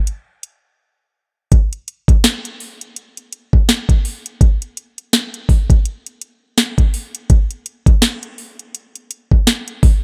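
This short piece of sensual, moody R&B opens with a smooth electronic drum kit that enters at 0.1 s and sits up front in a dry, close space. The kit is clearly produced, with a knocking kick, a sharp snare and metallic hi-hats. At 83 BPM in 4/4, the groove moves at an unhurried pace, with a gentle 58% swing on the sixteenth notes that gives it a relaxed sway. A brief break arrives at 0.8 s, and a new section begins at 1.5 s, where the beat carries on through the rest of the piece. The dry, close sound keeps every hit of the kick, snare and hats distinct and present.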